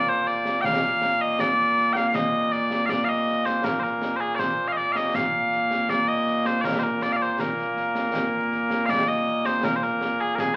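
Mellow, sweet small bagpipes carry a continuous solo melody up front in this short cut from a longer Scottish traditional pipe tune, a ceremonial and stirring piece in Bb major at 80 BPM in a straight 2/4. From 0.3 seconds a concert snare drum and concert bass drum join further back, with an acoustic, small-room sound and dark cymbals. A wet club reverb and the crackle of a very old 78 rpm record give the whole an antique, atmospheric character.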